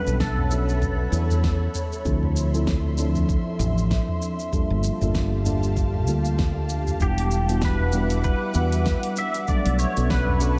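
A dreamy mix soaked in cathedral reverb gives this wistful, smooth sunset chillout excerpt a hazy glow, moving at 97 BPM in 4/4 with a swung sixteenth feel in E minor, tuned to A4 = 438 Hz. A mellow FM electric piano with chorus and tape echo carries the accompaniment, soft, round and full-bodied with a fast attack and decaying notes, while an ethereal, airy pad of detuned sawtooth and triangle layers holds long, slow-blooming chords under ensemble chorus. A dark, direct fingered electric bass sits up front, joined by a produced R&B kit of fat snare, warm hats, shaker and toms, and a knocking electronic kick, both re-recorded in a small room. A twangy, clean pedal steel guitar played with fingerpicks sings the melody with slide and volume swells, compressed and wrapped in ensemble chorus and tape echo. It speaks only briefly at the opening, then falls quiet until 7.0 seconds, when it returns. 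Beneath it all drifts a progression of minor ninth chords moving from Bm9 through Dm9, Gm9 and Em9 before settling back on Bm9.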